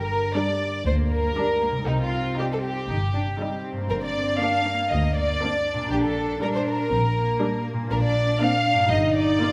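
A straight 4/4 pulse at 119 BPM carries this playful, whimsical film cue in G minor, its sneaky, quirky mood sitting under a wet scoring-stage reverb. The violin section's second line sits up front with a smooth top, while the melody violins float softly in the background, both bowed sul tasto for a pure tone between Eb4 and F5. A concert harp rings out fingerpicked arpeggios from G2 to G4, and a dark double bass section anchors the low end with light vibrato and a close, intimate sound. The viola section joins at 0.4 seconds with floating accompaniment, and the cello section arrives at 0.9 seconds, adding a gentle bass voice with soft attacks. The harmony dwells on G minor before shifting toward B-flat and closing on E-flat over G, in a short fragment lifted from a longer piece.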